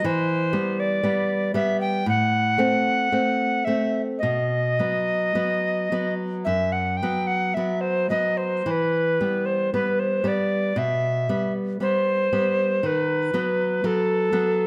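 In a free, rubato 4/4 that drifts between 53 and 61 BPM, this brief passage from a longer romantic duo unfolds in E minor with a solemn, elegiac mood. An alto recorder carries the melody up front, its wooden, airy tone marked by vibrato, tongued attacks and a chiff at the start of notes, moving between A4 and G5. Beneath it, a nylon-string classical guitar supplies fingerpicked accompaniment, full-bodied and warm, with occasional finger squeak audible as it ranges from F#2 to C4. Both instruments sit close and present throughout the 14.7 seconds, the recorder slightly more prominent than the guitar. The harmony moves from Em through Am to a B chord at 4.2 seconds, returns to Em, and closes on B/D#. A moderate recital hall reverb gives the pair a natural, intimate sense of space.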